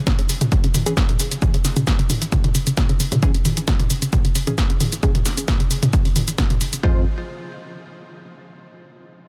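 Driving peak-time techno at 133 BPM in a straight 4/4, industrial and relentless in mood, cut from a longer piece. A layered, punchy electronic kick sits up front, joined by a punchy analog drum machine supplying hi-hat, shaker, snare and toms, both with a tape-warm, small-room character, the hats and toms pumping against the sidechain. A tight sequenced sawtooth synth carries the riff between Db3 and F3 with a filter pluck, chorus, sidechain pumping and delay, while a filter sweep runs across it through the first 6.8 seconds. From 0.9 seconds a crisp, wave-folded wavetable chord stab enters further back, spanning Fb3 to C5 with a moving notch, sidechain pumping, delay and its own filter sweep. At 6.8 seconds a dark, detuned saw bass arrives on F2, deep and rumbling with tube saturation and sidechain pumping, all set in digital ambience under a dense, heavily limited modern master.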